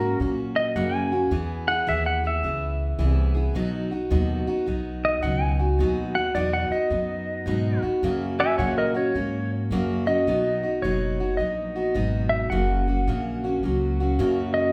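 Honky-tonk and classic country in a sunny, nostalgic mood at 107 BPM with a swung 4/4 feel in B major, this snippet features a clean, compressed pedal steel guitar with fingerpicks, slide and volume swells that takes a solo from 0.0 to 10.3 seconds, up front alongside a bright, full-bodied dreadnought acoustic guitar with fresh strings picking the accompaniment, while a woody, thumpy pizzicato upright bass with gut strings anchors chords moving through F#, E and B, all played live in one room with a wet large-studio reverb.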